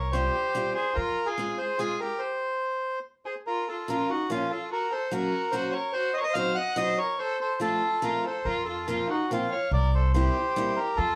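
This musette waltz moves at 144 BPM in 3/4 with a rubato feel, in a nostalgic, whirling mood, and it is a fragment cut from a longer piece. A reedy bandoneon sits up front carrying the melody, while a single bowed violin with a nasal, gut-string, period-style tone plays a second line from a more distant place. A picked acoustic archtop guitar with old strings adds woody, boxy accompaniment, and a pizzicato upright bass with steel strings gives a dark low end, sounding only briefly at the start before returning at 8.5 s. The music begins in F minor, halts in a stop at 2.2 s, then shifts into Bb harmonic minor at 3.5 s, passing through Bbm, Gb, Cdim, F and Fsus4 before landing on a C7. A wet small-room reverb places the listener further back in the room.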